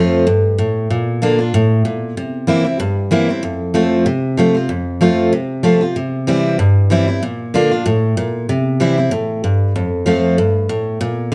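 Bluegrass in F major at a driving 190 BPM, with a light swing on the eighth notes, this short rustic excerpt features a single picked steel-string acoustic guitar playing solo, ranging from F2 to F4. The guitar has a full-bodied dreadnought tone and sits up front, captured by close, detailed microphones with light reverb. The harmony moves through F, Bb and C7, and a repeat of the opening phrase begins at 4.7 seconds before the guitar settles back on F near 9.8 seconds.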